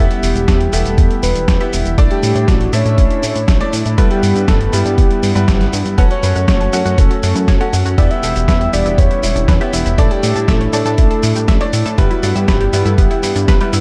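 A straight 4/4 pulse at 120 BPM drives this bittersweet, melodramatic italo disco passage in E dorian, cut from a longer piece, with a gritty, overdriven electronic kick sitting up front from 0.5 seconds and a dusty soul sampler-style kit of cabasa, hi-hat and medium-tuned snare, also overdriven and re-recorded in a small room, closing on a drum fill at 13.5 seconds. Beneath it, a chorused synth bass with tube saturation gives a glossy, retro bottom end, and a soft-attack analog pad holds sustained chords in the background through Em, Asus4, Em/G and F#m. A soft octave-layered synth lead carries the melody between F#4 and E5, its round, dark tone colored by chorus, tremolo, tape echo and shimmer reverb. A brilliant, worn grand piano adds short-sustain stabs with shimmer reverb, while an analog pluck enters at 6.0 seconds with chorused, echoing arpeggios tucked behind the other parts. The production is dark and lightly reverberant overall.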